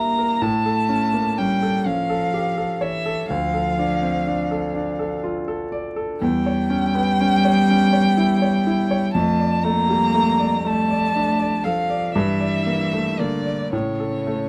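A dark, woody violin carries the melody with expressive vibrato, its single bowed voice sitting up front throughout this 14.5-second passage cut from a slow, romantic piano-trio movement. Beneath it, a cello plays a second line with a warm, airy sul tasto tone, a soft attack and light vibrato that feel intimate and close. A clear concert grand supplies the accompaniment, reaching into deep bass, with short sustain and audible action noise adding a polished, present touch. The 6/8 metre is shaped with free rubato, and the harmony moves through A7, Dm, C#dim/E, Dm/F and Gm before arriving on A. Recorded with close, detailed microphones and little reverb, the trio sounds melancholic and yearning.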